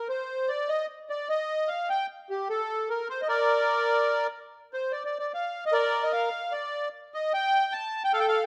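Nostalgic and charming, this short musette fragment is cut from a longer piece and moves in 3/4 at 150 BPM, though the time is loose and rubato. A solo accordion carries it alone from 0.0 to 8.5 seconds in Bb major, its melody sitting between G4 and A5. The instrument's reedy, sweet voice has a light tremolo tuning and a touch of slapback echo, and it sits up front in the sound. Close, detailed microphones and light reverb frame it, while the accordion's band-limited, vintage quality gives it the feel of an old keepsake.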